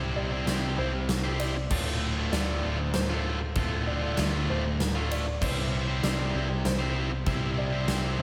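Brooding and cinematic, this short post-rock passage moves at 97 BPM in a straight 3/4, cut from a longer piece and moving from C to D minor and back to C. A bright, overdriven electric guitar sits up front with a picked riff spanning D2 to C5, its tone given a slapback echo. Beneath it, a hollow-body short-scale electric bass plays a dark, round, punchy line between D1 and D2. A felt-muted upright piano enters at 0.2 seconds with soft, intimate arpeggios between C5 and D5, sitting in the background with its action noise audible and a slapback echo of its own. A big acoustic rock kit comes in at 0.5 seconds with a punchy kick, medium-tuned snare, and bright crash and ride cymbals, all set in a concert-hall reverb that gives the mix a big arena sound.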